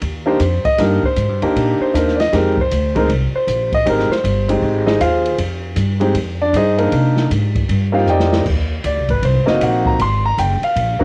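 Woody, thumpy pizzicato upright bass on gut strings and a dark, boomy open jazz kit with a cassette-tape tinge open this smoky, moody, swinging jazz piano trio excerpt at 156 BPM, joined at 0.3 seconds by an up-front, natural baby grand piano soloing over Cm9, Fm9 and Ab7 chords, with a brief drum fill at 8.1 seconds, set in light studio reverb on a home cassette recording.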